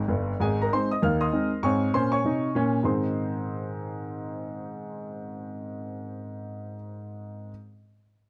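A dry, close 1970s-style studio sound with light reverb frames this short, swinging and exuberant stride piano cut in Ab major, moving briskly at 196 BPM in a swung 4/4. A clear, worn baby grand piano plays solo and up front throughout, its long sustain ringing across a span from deep bass to bright treble. It opens with a quick fill before settling into a chord pattern that moves from Ab to Db5/Ab and back to Ab by 2.8 seconds.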